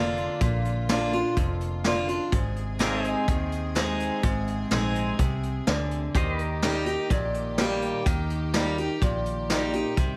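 A vintage brush drum kit with a punchy kick and rolled-off top keeps a straight 4/4 shuffle-free pulse under a dark, foam-muted fingered electric bass, setting a dusty, heartbroken honky-tonk and classic country mood. Up front, a bright parlour steel-string acoustic guitar picks the accompaniment through Bb, Ab and Eb, while a clean, compressed pedal steel guitar with fingerpicks, slide and volume swells drifts in the background beside a rich, floating bowed string section. Light reverb frames this short cut from a longer piece, with the pedal steel dropping out at 9.9 seconds and the drums at 10.1 seconds, just before the guitar, bass and strings end at 10.2 seconds.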